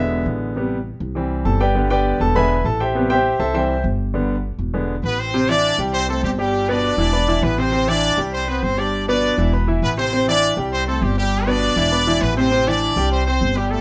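A bright concert grand piano and a woody, thumpy pizzicato upright bass open this driving, fiery salsa excerpt in A minor at 201 BPM, cycling through E7, Am7, C and G, before a brilliant horn section with light vibrato and octave doubling enters up front at 5.0 seconds to carry the melody through to 13.8 seconds, all set in light reverb.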